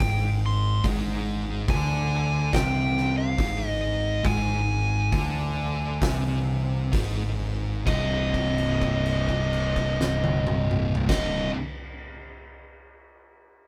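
The recording captures a band playing live in one room, with moderate studio reverb giving the heavy sound a shared sense of space. This short cut from a longer stoner and doom metal piece sits in C minor, moving in a straight 4/4 at 63 to 72 BPM with a sludgy, hypnotic mood. An oversized, low-tuned acoustic drum kit sits up front, its boomy kick, fat snare and dark cymbals saturated and gritty within a pumping room sound. A growling fingered electric bass adds a bright, punchy, overdriven edge. Two thick fuzz guitars grind out the low riff, one murky and set in the background, the other warmer, while a distorted fuzz lead guitar carries the melody up front in a higher register. Over an Ab(#11) chord the band slows down from 0.8 seconds, then lands on C minor at 7.9 seconds for a held note that rings until 11.1 seconds.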